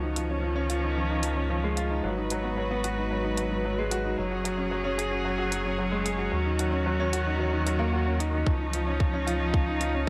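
A clear, woody upright piano riff with digital delay sits up front in this intimate, hypnotic piano-and-strings electronica excerpt at 112 BPM, set over sustained bowed chords from a rich chamber string quartet with vibrato and portamento, a round, deep analog bass with tube saturation and sidechain pumping, and a layered electronic hi-hat, while a tight electronic kick drum arrives at 8.5 s as the build-up cycles through C#add9, G#m7, F#sus2 and D#m7 in a moderate concert hall reverb.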